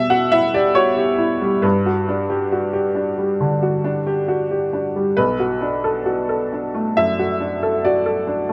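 Reflective and melancholic, this rubato neoclassical minimalist piano fragment in B minor, at 68 BPM in 4/4 and tuned slightly sharp at A4 = 441 Hz, features a solo upright piano with a woody, worn, slightly detuned tone, up front in light reverb and spanning B1 to F#5, moving through Emadd9, Gmaj7 at 1.6 seconds and Bm7 at 5.2 seconds across a brief 8.5-second cut from a longer piece.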